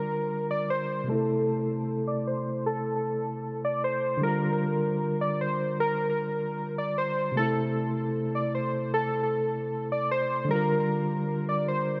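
Hip hop with a half-time feel, this menacing, brooding passage is cut from a longer piece. Up front, warbly lo-fi synth keys carry the melody with a detuned, ring-modulated tone that mixes pulse and sawtooth waves, their fast attack decaying under chorus and a low-pass filter for a nostalgic haze. Alongside them, also up front, a clean tine electric piano plays accompaniment, also filtered and heard as if through built-in speakers, giving the harmony a warm, boxy presence. A filter sweep runs from 1.1 to 7.4 seconds as the chords shift between Gm7 and Am. Both parts sit in a huge ambient reverb with a long 4.8-second tail that wraps the dark mood in a murky, cavernous space.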